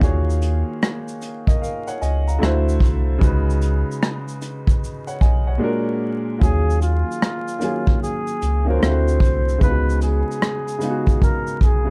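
A dark, hazy production with light reverb and vinyl crackle frames this nostalgic, swung lo-fi hip hop excerpt in 4/4. A clear, woody upright piano, softened by cassette tape and a low-pass filter, moves through Ebm11, D9 and Db9sus4 chords over a round sine sub bass. An up-front brushed kit of tight kick, rim click, hi-hat and shaker drops out from 5.6 to 6.4 seconds, and at 6.4 seconds a breathy, distant flugelhorn enters with a whispered, jazz-style solo touched by light vibrato.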